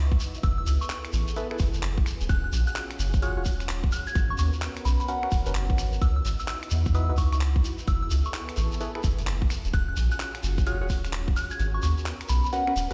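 Heard through a big sound system in a bare stone room with light digital ambience, this late-night, soulful two-step garage excerpt swings at 129 BPM over minor eleventh chords moving F#m11, D#m11, G#m11 and C#m11. An overdriven, tight kick and a deep, round dub sub bass sit up front, while a gritty, pitched-up sampler kit of finger snaps, handclaps and hi-hat and a grainy, close shekere fill in the groove. A silky vintage string machine pumps with phaser and ensemble chorus beneath a pure FM bell melody with tape echo, a hollow, wave-folded organ stab joins at 1.4 seconds, and the kick drops out at 11.6 seconds.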